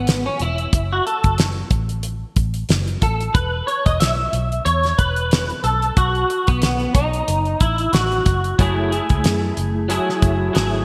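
A gently swung 16th-note groove at 92 BPM in 4/4 sets a wistful, hazy indie and bedroom pop mood in F# dorian, in this excerpt from a longer piece. The damped 70s drum kit sits up front with a fat snare, tight kick and hi-hat, sounding dry, mid-forward and rolled-off on top, with gated reverb around it. Underneath, a vintage muted fingered electric bass gives a dark, round, foam-muted low end. An electric guitar through a small old amp carries the accompaniment up front, slightly broken-up, picked and compressed, with ensemble chorus and vibrato, while a clean electric guitar solo runs until 8.6 s. The chords move from F#m7 through E5 and B7 back to F#m, then open onto F#m9 as the music shifts into a new section at 8.6 s, all set in a lush hall reverb with bright 1980s-style digital production.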